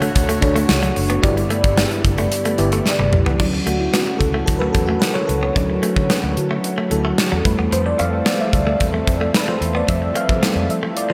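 A gated 80s drum kit with a punchy kick, airy gated room and bright cymbals opens this uplifting, glossy slice of 1980s-style pop at 111 BPM in D major. From the start it is joined by a dreamy FM electric piano with a soft pad layer, a smooth, detuned sawtooth analog pad holding sustained chords in the background, a clean electric guitar riff and a round, foam-muted fingered bass. The harmony moves from Dmaj7 to G6, and a drum fill leads into an FM electric piano solo from 3.4 seconds, its fast-attack, decaying tones thickened by chorus, tube saturation and shimmer reverb. The direct-recorded guitar is picked and compressed, dressed in lush chorus, tape echo and shimmer, while the chords turn to Fmaj7 at 7.5 seconds. A moderate hall reverb over small room ambience gives the whole mix a big arena sound.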